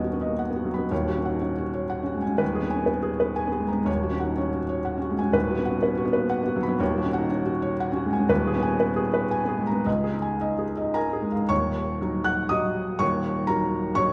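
Neoclassical minimalist piano in Eb minor, this short cut from a longer piece carries a reflective, intimate mood in a rubato 3/4, drifting between roughly 108 and 127 BPM. A felt-muted upright piano plays alone throughout its 14.1 seconds, reaching from D#1 down low to Gb6 up high. Its tone is soft and mellow, with a boxy, thin-felt character and audible action noise, and it sits close and up front. The harmony circles through suspended and added-ninth colours such as B/D#, Dbsus4/Eb and Abmadd9/Eb before settling on an Ebm7 chord at 11.5 seconds as a brief new section begins. A wet recital hall reverb, as if in a church or concert hall, gives the close, muted instrument a lingering halo of space.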